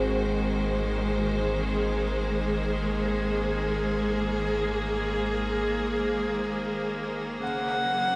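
A bright, bowed studio string section sits up front in this serene, reflective ambient fragment in free time, holding intense, vibrato-rich sustained chords from the start through 8.2 seconds under a shimmer reverb. Beneath it, a deep, rumbling drone supplies the bass, its dark, nasal, detuned tone shaded by ring modulation and a slow attack that gives an ominous undercurrent. A felt-muted upright piano, soft and intimate with audible action noise, plays very quiet arpeggios until 7.4 seconds. At that moment the harmony moves from Ab7 to Gb, and a warm electric violin enters up front with a smooth, even single note carrying vibrato and portamento. The whole is bathed in a lush hall reverb and has the character of cassette tape, and it is cut from a longer piece.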